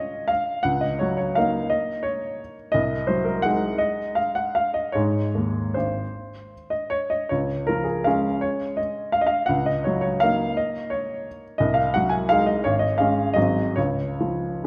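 A playful, sparkling classical piano waltz in 3/4 and D-flat major, this excerpt features a clear, natural baby grand piano playing solo with short sustain, placed up front and ringing through a wet recital hall reverb as its rubato tempo moves between 139 and 183 BPM over a progression that returns to D-flat at 13.8 seconds.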